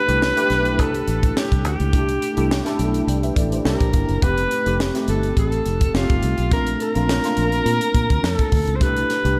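A lightly swung 4/4 groove at 105 BPM drives this breezy, urban slice of polished 1980s jazz-funk pop in C major, where a crisp, airy fusion drum kit with a punchy kick and high-tuned snare joins a dark, round, foam-muted fingered electric bass under a worn, slightly out-of-tune tine electric piano shimmering with ensemble chorus, while a distant, vibrato-laden alto saxophone sings the jazz-styled lead through delay, the whole mix soaked in dreamy church reverb as the chords move from C6 through C7, F7 and Bbmaj7 back to C6.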